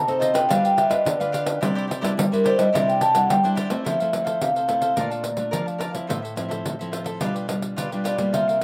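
Joyful and sunny, this samba and choro passage at 107 BPM in F major puts a mellow, ringing vibraphone played with soft mallets up front, featured as a solo for the first 3.8 seconds, alongside an up-front, deep classical nylon-string guitar fingerpicked with audible finger squeak, a crisp, bright picked cavaquinho and a jingly pandeiro played with soft hands, the last two carrying a slapback echo, in a dry open-air recording.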